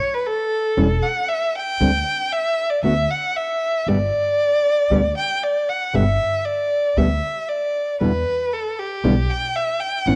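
A bowed violin sits up front with expressive vibrato, portamento and a smooth top, carrying a solo from 0.0 s in this tense, sultry tango fragment in G major, taken at a rubato 116 BPM. From 0.8 s a thumb-plucked classical nylon-string guitar and a woody, growly pizzicato upright bass join beneath it, moving through Dsus4, D and G before settling on Em7 at 8.0 s. Light reverb frames this homemade cassette recording, with a tape tint colouring the violin and guitar.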